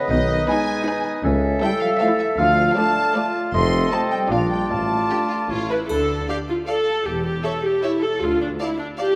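A woody, soft-mallet xylophone opens this quirky, magical film cue in 3/4, carrying the tune alongside a clear clarinet, an oboe, a mellow bassoon and a tight French horn section, soon joined by focused violins doubling the melody, an airy flute section, a tuba, lush cellos, distant double basses, a rich background violin line and an up-front, expressive viola section, before the winds, brass and xylophone drop out by 5.8 seconds and a background triangle at 5.9 seconds ushers in a string-led passage, all set in a wet scoring-stage reverb.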